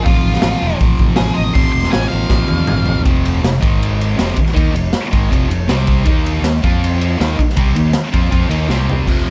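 A dark, octave-fuzz lead guitar and a bright, double-tracked fuzz guitar riff kick off this raw, rowdy garage rock excerpt in F major at 159 BPM, with a round, amped fingered bass and a gritty, saturated drum kit joining almost at once. The drums sit up front in a small, pumping room, with a punchy kick, medium-tuned snare and rolled-off top; the lead guitar drops out at 3.0 seconds during a drum fill. The thick fuzz riff and bass then drive a second section moving through F5, Ab5, C5 and Eb5 power chords, closing on another fill at 8.7 seconds, all in a dry, close sound.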